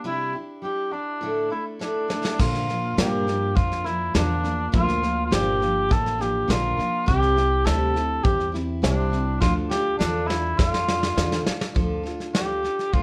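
Heard through worn, warbling old cassette tape with moderate studio reverb, this heartbroken, dusty honky-tonk and classic country fragment at 103 BPM opens on a bright, full-bodied picked dreadnought guitar and a dark, distant cor anglais carrying the melody with light vibrato; soon a soft brush kit with a punchy kick comes in up front, upright bass joins in woody, thumpy pizzicato at 2.4 seconds, a mellow baby grand piano sits in the background from 3.0 seconds, and a drum fill leads into a closing cor anglais solo at 11.8 seconds.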